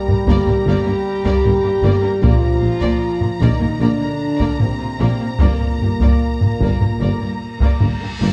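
Majestic, adventurous cinematic orchestral scoring opens at once, with a lush, vibrato-rich violin section holding a high Bb5 melody over mellow, tightly close-miked French horns and soft-edged trombones sustaining chords. At a broad 76 BPM in straight 4/4, the passage moves from G minor to Bb major at 2.2 seconds and back to G minor. A clear, distant second violin line and a focused viola accompaniment sit in the background. The low end is deep and heavy: smooth-topped cellos, woody double basses and a solo tuba share the bass. A compressed, saturated taiko ensemble struck with hard sticks drives the passage as its loudest part, while very quiet timpani on soft mallets add a round Bb2 touch of color only between 2.2 and 3.4 seconds. A huge, bright reverse cymbal rises in at 7.5 seconds as this cut from a longer piece ends, all set in a moderate scoring-stage reverb with a dark production.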